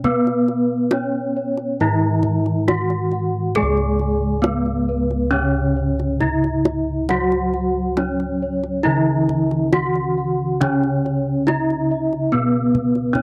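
Heard through light reverb on a cassette tape, this ceremonial, shimmering cut from a longer Javanese gamelan piece moves at 68 BPM in C# slendro. Up front, a bronze metallophone struck with a wooden mallet carries the melody with ringing, paired-tuning beats. A second metallophone played with a horn mallet gives the accompaniment a vintage, band-limited tone, while a third, mellow and soft under padded disc mallets, spins arpeggios above. Bright, round bossed gongs anchor the bass, and a tight, close and dry kendang keeps the pulse throughout the 13.2 seconds.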